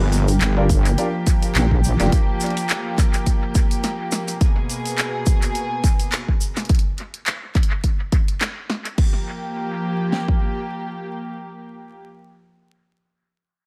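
Dark, distant strings with a reedy, gut-string tone hold sustained chords under sidechain pumping as a heavy, saturated wobble bass opens this gritty, playful glitch hop excerpt, its filter sweep ending at 2.1 s. Two electronic drum kits follow at 105 BPM with swung 16ths in G phrygian. One sits up front with a punchy kick and fat snare, while the other adds crash, handclaps, hi-hat and snare through dub echo, joined by a grainy tube shaker and brief, boxy grand piano stabs that also pump and echo. The chords move from Gm7 to Abmadd9 and back to Gm7 at 9.0 s, in a dry, echo-heavy mix laced with vinyl crackle.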